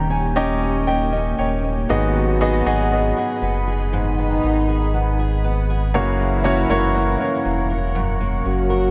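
Pop ballad at 59 BPM in 4/4, hopeful and emotional, opening with a grand piano fill over D#7 before settling into G#m7 and F#, where a smooth, vintage-toned piano and a deep, full sub bass sit up front, a fingerpicked jumbo steel-string acoustic guitar plays full-bodied arpeggios, a glassy, ethereal FM pad holds mellow, warbling chords with ensemble chorus, and a warm French horn section with light vibrato enters at 1.9 s to carry a classical-style second line, all in an echo-heavy mix with analog delay on piano, guitar and horns and a small-room reverb.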